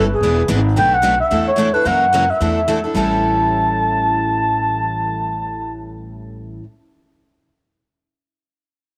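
Acoustic jazz manouche with a playful, charming swing, cut from a longer piece: a breathy, intimate clarinet carries the melody up front, its subtone colored by vibrato and scooped notes, until it drops out at 5.9 seconds. Two picked steel-string acoustic guitars supply bright accompaniment, one with fresh strings, both showing audible finger squeak. A woody, thumpy upright bass on gut strings anchors the low end, and a wet spring reverb bathes the recording through the chords E7, Bm7, E7sus4, F#7 and A7.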